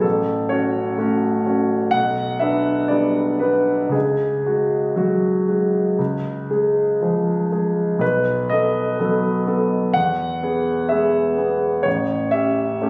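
A clear concert grand piano sits up front, its deep bass and long sustain carrying a passionate, stormy romantic character piece played solo with free, rubato timing across a 12.9-second excerpt from a longer work. The harmony moves from F#m/A through C#sus4 resolving to C#, then B7 to E before turning to A7. Captured on a phone in a recital hall, the sound has a moderate hall reverb with added studio reverb and compression, keeping the piano's natural tone.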